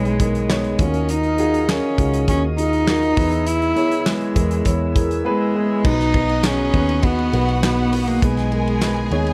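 A close, up-front solo cello carries the melody in this dramatic, bittersweet piano-driven pop excerpt, its sul tasto bowing airy and slightly nasal with a soft attack and light vibrato. Beneath it, a dark upright piano plays the accompaniment with a woody, mellow tone, long sustain and audible action noise, while a foam-muted fingered electric bass adds a round, amped low end. A loose indie drum kit enters at 0.1 seconds in a straight 4/4 at 101 BPM, with a fat snare, punchy kick, dark cymbals and handclaps sounding from a small room. A smooth tonewheel organ holds sustained chords in the background through a slow rotary speaker, as the harmony moves from Abm/Cb through Ebmadd9 and E to B. At 5.8 seconds a lush, distant violin section joins with an expressive second line colored by tape echo, all under a light reverb until the cut at 9.3 seconds.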